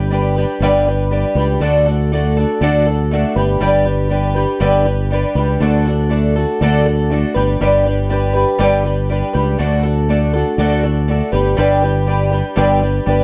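Folk rock with a heartland rock lean, this 4/4 excerpt moves at 120 BPM with a straight, open-road feel, swinging between G and D. A picked twelve-string acoustic guitar sits up front with a jangly, shimmering, octave-doubled tone that is woody, boxy and dark, with old strings. A fingered electric bass plays beneath it, round and amped, while a moderate echo-chamber reverb fills the room.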